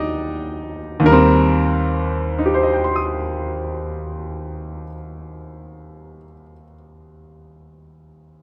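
A clear, smooth grand piano with a vintage tone, short sustain and an up-front presence carries this warm, swinging solo jazz passage in Eb major at a slow 45 BPM in 4/4. It eases its pace through the opening 1.0 seconds before settling into a lilting swing, ringing out in a moderate studio reverb as a fragment cut from a longer live performance.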